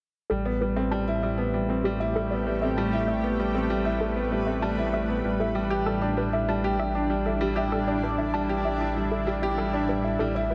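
Moving and hypnotic, this 97 BPM electronica fragment in straight 4/4 sets a clear, woody upright piano riff with digital delay up front over a deep, rumbling detuned saw bass on A1, while a round analog pluck plays arpeggios with chorus, delay and a filter sweep in the background, a cloudy, evolving granular pad enters at 1.8 seconds with sustained chords, and the harmony moves from Am9 to A7sus4 at 5.3 seconds inside a wet concert hall reverb.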